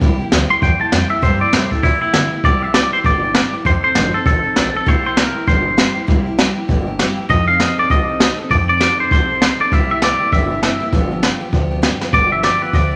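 A moderate large-studio reverb with a 1.1-second tail gives this rollicking, upbeat rockabilly cut an open, polished sound, swinging at 198 BPM in C mixolydian. The twangy electric guitar carries the melody up front, clean, compressed and picked, with its own spring reverb. The guitar enters at 0.5 seconds, while a clean electric guitar solo fills the opening 2.4 seconds. Beneath it, a jazz brush kit brings an airy studio feel, with a high-tuned snare and boomy kick, and closes with a fill at 12.0 seconds. An upright bass plucks woody, thumpy gut-string notes, while a picked dreadnought acoustic guitar picks a bright, full-bodied accompaniment with audible finger squeak. The harmony moves through C7, F7 and G7, and the passage is cut from a longer piece.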